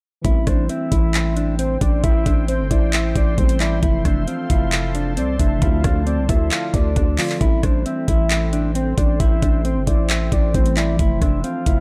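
A knocking trap drum kit with metallic hi-hats, handclaps and rim clicks opens this hard-hitting, eerie hip hop section at 0.2 s, together with a growling, buzzy 808-style bass and a clean, fingered electric guitar that carries the mellow melody. Muted, felt-like synth keys sit in the background beneath the guitar, softened by chorus and phaser. At 0.5 s a round, octave-layered synth lead enters as a second line, with vibrato, chorus and digital delay, and at 0.8 s a deep, moody ambient pad swells in slowly with full-bodied sustained chords bathed in reverb. The half-time groove keeps the drums and bass up front while the harmony moves through Am7, Fmaj7 and Dm7. The production is dark and warm, with a digital ambience that suits this short passage cut from a longer piece.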